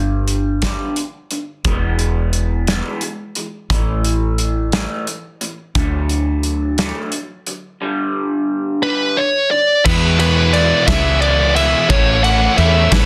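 A lilting 6/8 sway drives this cathartic, restless cut from a longer quiet-loud alternative rock piece. A loose indie drum kit sits up front with a pumping room sound, dark cymbals and a punchy kick, beneath a round, woody fretless bass coated in analog chorus. The opening is carried by a twangy, lo-fi electric guitar through a small old amp, picking slightly broken-up arpeggios through phaser and slapback echo until 9.8 seconds. A dark fuzz lead guitar enters at 8.8 seconds with a prominent melody drenched in slapback echo and plate reverb. As the loud half arrives, three picked rhythm guitars fill the background with riffs: a crunchy, overdriven one at 9.8 seconds, then a bright, double-tracked one with distortion and a scooped, high-gain one at 9.9 seconds. A very quiet, piping tonewheel organ holds sustained chords through a slow rotary speaker, all within light reverb and a dense, heavily limited modern master.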